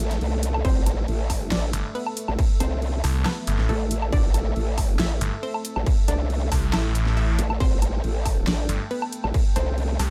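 Heavy wobble dubstep in A minor at 138 BPM with a half-time feel, this chaotic excerpt opens on a growling, formant-filtered bass and a lush, detuned supersaw pad that sits in the background with sidechain pumping and a low-pass filter, then a faint electronic swell leads into a mellow, delayed unison pluck melody and a distorted, tape-warm kick at 0.6 seconds, before a snarling, sawtooth bass with a moving notch joins at 1.7 seconds, all over a dubstep kit of huge snare, bright hats, crash and woodblock in a dry mix.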